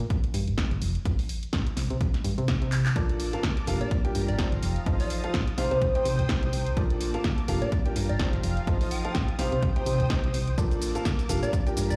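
A clear, woody upright piano riff, slightly detuned and up front, arrives at 3.0 seconds and carries this uplifting, euphoric piano house excerpt in Bb major, its long sustain pulsing with sidechain pumping and trailing a digital delay. Underneath, a round, mellow FM bass, also pumping, and a dry electronic kick drive the 126 BPM groove in 4/4, swung at 57% on the sixteenths. An analog drum machine adds handclaps, hi-hat, shaker and a punchy snare in a small room, with a drum fill at 2.7 seconds. Alongside the piano, a silky, bright string pad with ensemble chorus and vibrato holds sustained chords that pump with the beat, and from 3.8 seconds a catchy square-wave unison lead, dark and detuned with a noise layer and a moving notch, plays a melody through a digital delay. The chords cycle through Bbmaj7, Gm7, F7 and Cm, and the mix carries little reverb, sounding as if played on a big sound system in a bare room.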